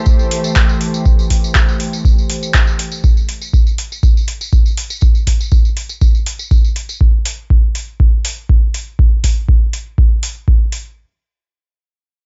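A lightly swung 121 BPM pulse in 4/4 drives this gritty, raw acid house excerpt in A minor pentatonic, with an overdriven deep analog kick and a drum machine's handclaps and metallic hi-hats, both also overdriven, re-recorded in a large room and placed up front, while a close, jingly tambourine plays until 7.0 s and a rich, earthy chamber string section holds bowed Am7 chords with light vibrato, sidechain pumping and a low-pass filter sweep before dropping out at 3.0 s, the whole heard as a dry hardware recording with transformer saturation and a dull top end.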